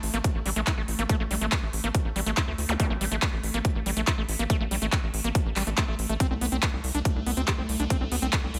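A screaming, squelchy acid line with resonant filter sweeps, distortion, chorus, digital delay and sidechain pumping drives this hypnotic psychedelic trance excerpt at 141 BPM in 4/4, riding over a tight, punchy sawtooth sequencer bass and a punchy electronic kick drum. A big-room dance kit with crisp hats and handclaps sits up front, tape-warm and re-recorded in a large room, while an evolving wavetable pad holds bright sustained chords in the background through phaser, built-in reverb and sidechain pumping. A brief electronic zap flickers at 2.7 seconds, and the harmony moves from A5 to C5 at 6.2 seconds under light reverb.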